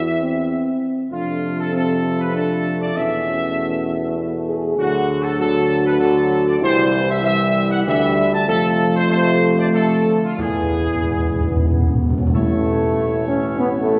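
Heard from further back on a wet scoring stage, this triumphant, solemn classical brass passage in 3/4 at 97 BPM is cut from a longer piece. A trumpet section carries the melody up front with light vibrato over sustained chords from mellow French horns and clear trombones, while a vintage-toned tuba holds the bass through a progression that moves from C/E toward E and lands on A. Hard-mallet timpani, close and dry, add a fill from 10.4 s, and a full chamber organ principal chorus with a touch of chiff enters at 12.3 s.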